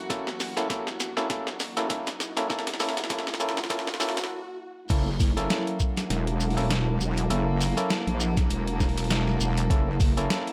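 A swaggering, gritty glitch hop excerpt at 100 BPM with a 16th-note swing opens on an F#7#9 chord, with bowed chamber strings of gut-string, reedy tone and a breathy, airy pad sitting in the background under percussive, stringy clav stabs that carry digital delay, all three with sidechain pumping. A very quiet electronic riser and a drum fill build up from the start, with a thumpy, compressed electronic kick, a sampler-style boom bap kit of medium-tuned snare, hi-hat and crash cymbal re-recorded in a large room, and a grainy, mellow shekere, before a stop at 4.3 seconds. At 4.9 seconds the drop arrives, and a heavy, saturated, detuned wobble bass with chorus pushes up front beneath the beat.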